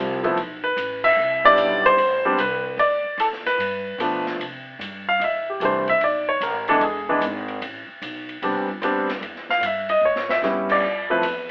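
Playful and warm, this jazz piano trio swings in 4/4 at 149 BPM, with the band hitting an accent at 1.0 seconds over chords like Cmaj9 and G7 before the up-front grand piano, present and ringing with long sustain, takes a solo from 4.4 seconds. A woody, thumpy upright bass with gut strings plays pizzicato underneath, while the small-room drum kit brings dark cymbals, a medium-tuned snare, a boomy kick and a rolled-off top, adding a fill at 10.0 seconds. The band plays live together in one room with moderate reverb, but the whole recording has a narrow, telephone-like sound, and the passage is cut from a longer piece.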